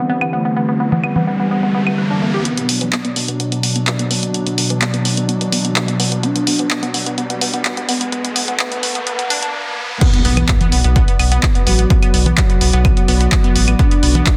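Melodic techno in B phrygian at 127 BPM, this hypnotic, dramatic excerpt cut from a longer piece opens with a smooth, warbling analog pad holding sustained chords under subtle chorus and sidechain pumping, while a lush, detuned unison pluck spins arpeggios through 12-bit sampler grit and delay. A dark, expressive synth lead carries the melody with vibrato, a moving notch and dub echo, and a punchy analog drum machine of claves, congas, handclaps, hi-hat and crash cymbal sits up front, each filtered and re-recorded in a large room. Filter sweeps move over the pluck and pad, a riser enters at 0.4 seconds and carries on through a build-up from 2.5 seconds as the lead is swept too, and the harmony moves from C to Bm. At 10.0 seconds the drop lands with an impact, a punchy electronic kick and, just after, a deep, round sawtooth-and-sine bass thickened by tube saturation. The mix carries light reverb and a dense, heavily limited modern master.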